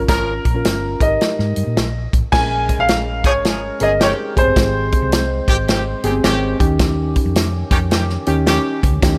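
Uptempo 1960s-style soul at 107 BPM with a swung feel, joyful and warm, cut from a longer piece, opening with a band accent over its first 2.3 seconds as a clear, short-sustained baby grand piano carries the melody until 6.0 seconds. Beneath it, a reedy, lightly overdriven electric piano supplies accompaniment, a dark, round hollow-body bass holds the low end, a punchy, up-front drum kit drives with snare, kick, hi-hat and crash, and a soft-attacked jazz-style horn section with light vibrato plays a second line. From 2.3 seconds a fat tonewheel organ with fast rotary speaker sits in the background with sustained chords as the harmony moves from Bbm7 to Abmaj7 and Eb7, all in a small room.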